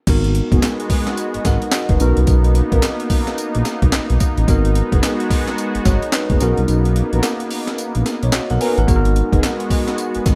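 Slick and punchy, this short cut from a longer R&B track in a new jack swing style moves at 109 BPM in G# minor, with a swung sixteenth-note feel and tuning set slightly below standard pitch. A gritty, compressed breakbeat sampler-style drum kit sits up front with a thumpy kick, a high-tuned snare, handclaps, hi-hat, tambourine and crash cymbal, and the kick drops out between 6.7 and 8.9 seconds. Alongside it, a smooth gliding synth bass built from sawtooth and square waves, also up front, holds dark, sustained low notes with portamento. A bell-like tine electric piano adds bright, clean accompaniment, while a warm analog pad with a slow attack and chorus lays down warbling, vintage sustained chords. Mellow synth brass stabs, nasal and full-bodied with vibrato, chorus, digital delay and a filter sweep, sit in the background over chords that alternate between G#m7 and Bmaj7, all in a dry mix.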